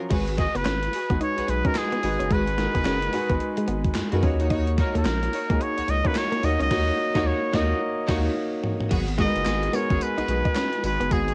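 A clear, intimate grand piano opens this confident, slick new jack swing cut in G# minor at 109 BPM, swung on the 16ths, soon joined by a picked clean electric guitar riff with subtle chorus, lush bowed string stabs set back in the mix, a deep, round analog bass up front, and a gated, overdriven 80s drum machine with gritty sampler crunch and a thumpy kick, while a nasal, breathy straight-muted trumpet carries the melody with scooped notes and tape echo, with every part except the bass colored by cassette tape, building to a band accent and drum fill before the G#m7 return at 8.9 seconds.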